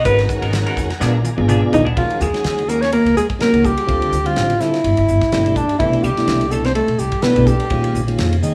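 A subtoned alto saxophone with light vibrato and slapback echo opens this slick, nocturnal electric jazz fusion excerpt up front, over a round tonewheel organ turning through a slow rotary speaker with audible key click, a silky analog string pad with ensemble chorus and bright, twangy chorused guitar stabs. Woody pizzicato upright bass and a dry, damped 70s drum kit with a fat snare and dark cymbals join almost at once, and the drums play a fill from 1.0 seconds. The pad and stabs drop out at 2.0 seconds, while a dark, fingered hollow-body jazz guitar, entering at 1.8 seconds, carries a second line in the background through lush extended chords in a small, lightly reverberant room.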